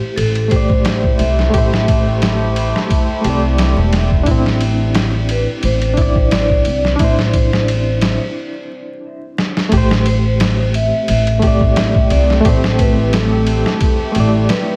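A brooding, smoky trip hop excerpt in A minor at 88 BPM opens with a ringing, metallic vibraphone melody in dub echo, a reedy, barky electric piano under tremolo, tape echo and a filter sweep, and a deep, detuned ambient pad that sits in the background with chorus. At 0.2 seconds a woody pizzicato upright bass and a gritty, pitched-down sampler-style kit with a thumpy kick, snare and ride arrive up front, all over vinyl crackle and a gentle swing, moving from Am7 to Cadd9/A. A break at 8.4 seconds ends in a drum fill that leads into a new section at 9.7 seconds.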